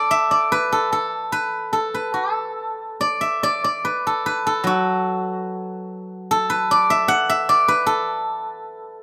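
A silvery, ringing steel-string zither, played with fingerpicks and sitting up front, carries this short excerpt of Chinese traditional solo plucked-string music alone from 0.0 to 9.0 seconds, its lines spanning F#3 to F#5 in an elegant, serene mood. The pulse moves in an unhurried two-beat metre with uneven beats and free rubato, shifting into a new section at 3.0 seconds. A light, small-room reverb surrounds the acoustic tone, and the rough home-demo mix lends it an intimate, unpolished quality.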